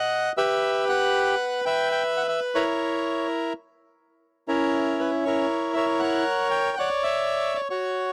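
Rubato over a nominal 117 BPM in 4/4, this dramatic, sultry tango fragment of about 8.1 seconds features a solo bandoneon, reedy and dark, close-miked and full at the front of a dry 1970s-style studio sound, moving from a chordless opening through Emadd9 and F#7 to Dmaj9 at 6.8 seconds, with A tuned to 441 Hz.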